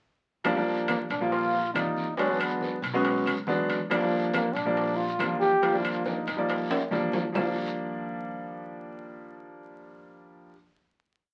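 A complete, sunny and sophisticated Afro-Cuban jazz piece in Eb major at 139 BPM opens at 0.4 seconds with a clear baby grand piano playing syncopated, rootless chord stabs, up front and intimate with audible action noise. A thumpy upright bass plays a tumbao that anticipates the chords, while the percussion section enters: ringing metal-shell timbales with a saturated shell pattern and bell, tight high-tuned bongos in steady eighths with hand bell, low-tuned thick-skinned congas with slaps and open strokes, woody claves playing a two-bar time line, and a raspy guiro. At 0.9 seconds a clear trombone takes the solo up front, singing hook-like motifs with jazz vibrato over chords moving between Ebmaj7 and E9. A drum fill closes the main section, and at 7.3 seconds the piano and bass move into the final chord after the trombone has finished, with the percussion dropping out shortly after. 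The whole recording carries a club reverb and the crackle and dulled top end of a very old 78 rpm record.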